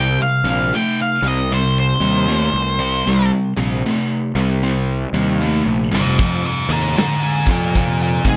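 A dark, picked octave-fuzz lead guitar carries the melody over a bright, double-tracked fuzz guitar riff and a round, overdriven picked bass, opening this smoky, gritty blues rock and southern rock excerpt in C minor at a swung 77 BPM. At 6.2 seconds the harmony moves from Cm to Fm7 as a big rock drum kit enters with punchy kick, medium-tuned snare and hi-hat. The sound is a dry, close 1970s-style studio recording with every part up front.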